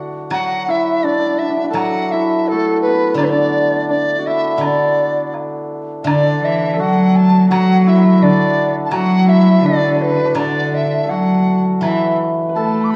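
Festive and graceful, this brief excerpt of Chinese traditional chamber music moves in a rubato 2/4 at 83 BPM in D gong mode. A large bamboo dizi carries the airy, buzzing melody with vibrato and a crisp attack, and a mellow, shimmering hammered dulcimer plays a second line. A silvery steel-string zither, plucked with fingerpicks, accompanies them, while a woodblock sits in the background. A rich, smooth bowed cello joins with its own second line at 6.0 s, all set in a wet recital-hall reverb with a dark, warm production.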